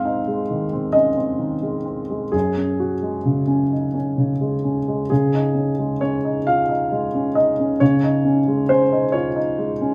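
A solo grand piano opens this short passage of neoclassical minimalist music, its sound warm and intimate, with the mechanical noise of the action clearly audible. The playing moves in 6/8 with a free, rubato feel, and the mood is hopeful and close. The harmony rests on an Ab6 chord at the start, shifts to Gbsus2 at 2.3 seconds, and settles on Dbsus2 at 5.1 seconds, spanning from low Gb2 up to F5. The piano sits up front with a natural tone, set in a wet studio reverb that gives the room a soft glow. The performance was captured live in one room, and lossy compression artefacts colour the sound, as this brief moment is cut from a longer piece.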